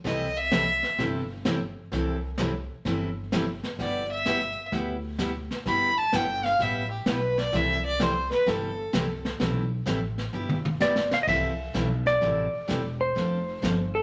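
Down-home and cheerful, this short western swing country passage at 128 BPM in C major has a bright, full-bodied picked dreadnought acoustic guitar and a dark brushed drum kit with a punchy kick, a woody, thumpy pizzicato upright bass on gut strings, and a rich, bowed fiddle with light vibrato taking the lead phrases in two stretches that end at 9.3 seconds. A drum fill follows at 10.3 seconds, and a clean, up-front lap steel guitar played with fingerpicks and slide enters at 10.8 seconds, all in a moderate studio reverb.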